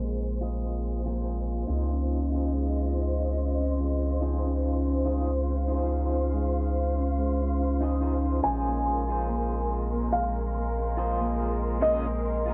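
A straight, unhurried trip hop groove in 4/4 sets a hypnotic, cinematic mood in this cassette-worn home recording, where a round, deep analog bass with tube saturation sits up front beneath a slightly broken-up electric guitar carrying tremolo and tape echo, a woody, lush violin section holding sustained chords and a ringing, thumb-plucked concert harp playing arpeggios pass through filter sweeps, and a breathy, wind-like noise texture hovers in the background, until a felt-muted upright piano, soft and intimate with audible action noise, enters with the melody at 8.4 s, all inside a light reverb.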